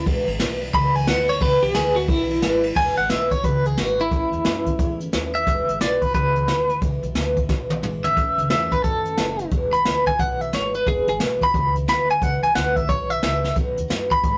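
Upbeat and rowdy, this swinging rockabilly excerpt at 178 BPM in E mixolydian opens with a clean electric guitar solo, and throughout, the twangy, slightly broken-up lead guitar with tremolo carries the melody over a bright dreadnought acoustic guitar with audible finger squeak, a woody, thumpy pizzicato upright bass, and an up-front brush drum kit with dark cymbals and a boomy kick that adds fills at 7.5 and 13.4 seconds, all captured in a rough rehearsal-room sound with light reverb and saturation.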